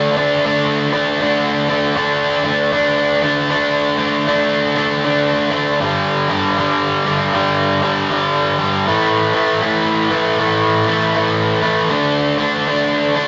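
A rough rehearsal-room recording with a dull top end and moderate booth ambience frames this short, gritty rock excerpt, cut from a longer piece. A lone electric guitar carries the whole passage, biting and overdriven, picked and double-tracked, sitting up front in the mix. It moves through power chords: D5 at the opening, then G5 at 5.8 seconds and A5 at 8.9 seconds, before returning to D5. The feel is driving and swung in 4/4, with the guitar ranging from G2 to D4 and tuned to A4 = 436 Hz. The result is a raw, muscular passage that feels like a guitarist warming up in a cramped room.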